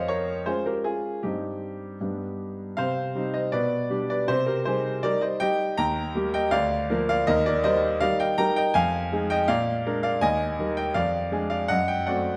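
A natural, up-front grand piano plays alone throughout this restless yet elegant classical-period sonatina fragment, set in C minor at 80 BPM in a straight 2/4 and spanning D2 to Bb5. A brief opening phrase moves from Db/F through Cm/G to G. At 2.8 seconds a new section turns toward Eb, passes through Fm7 and Bb7, and stops on an unresolved F#dim7, as the clip is cut from a longer piece. A wet recital hall reverb with a 1.4-second decay surrounds the piano.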